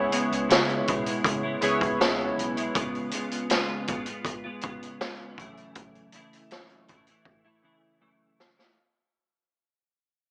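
Heard through a small-speaker sound with a moderate spring reverb, this hazy, mellow bedroom-pop fragment is cut from a longer indie-pop piece and fades out across its whole length. It moves at an unhurried 80 BPM in a straight 4/4, drifting from C#m7 to C#7 and then F#m7. Up front, a chorused retro synth with glossy, detuned pulse and sawtooth tones, a filter sweep and a cassette-tape patina is heard only in the opening, stopping at 2.8 seconds. Alongside it, a dark, round hollow-body short-scale bass sits in the background and drops out by 2.7 seconds, while a clean, compressed, picked electric guitar with ensemble chorus and a warbly pitch drift carries on to the end. A raw garage kit of boomy kick, medium-tuned snare and hi-hat sounds gritty, saturated and rolled-off on top, closing with a drum fill from 7.3 seconds.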